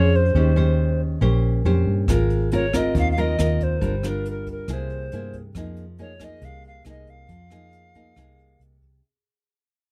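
Bossa nova with a melancholic, wistful mood, cut from a longer piece and fading out throughout, where a hollow, pure tenor recorder carries the tongued melody with vibrato and chiff over up-front, full-bodied fingerpicked nylon-string guitar with audible finger squeak and a round, foam-muted vintage electric bass, while a jazz brush kit with a boomy kick and rim clicks joins at 2.1 s, all captured by close, detailed microphones in a dry sound.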